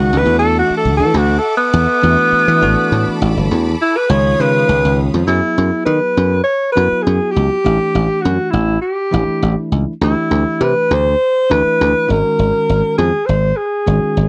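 A straight 4/4 groove at 101 BPM drives this nocturnal jazz fragment, anchored by a punchy, foam-muted thumbed slap bass sitting up front beside a bell-like tine electric piano playing clean accompaniment. A breathy alto saxophone carries the melody with a mellow subtone, light vibrato and a slapback echo, taking a solo over the first 5.3 seconds while a lush, bowed symphonic string section holds sustained chords until that same point. Suspended and ninth chords colour the harmony, and the whole takes the form of a dry, close 1970s-style studio recording.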